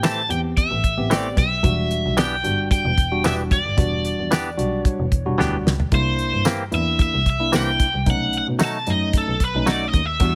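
Soulful and smoky, this straight-eighth soul blues excerpt at 112 BPM in 4/4 sets an overdriven, up-front cranked stack guitar melody over a barky tine electric piano, twangy, compressed stabs from a direct-recorded clean electric guitar and a bowed double bass with a nasal, gut-string tone, while a damped 70s drum kit with a fat snare and dark cymbals plays a fill at 5.4 seconds as the harmony moves through Am7, Em7, C7 and B7 with little reverb.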